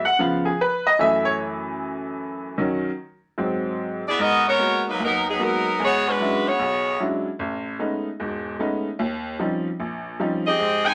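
Swinging 4/4 at 150 BPM, this dramatic, brassy jazz excerpt opens with a bright, woody, slightly detuned upright piano playing solo over a turn of seventh chords, before a close-miked saxophone section with a clear tone, light vibrato and soft attack takes the melody up front at 4.1 seconds, as the music settles into G# minor over lush extended harmonies and returns briefly at 10.5 seconds, all set in a wet studio reverb.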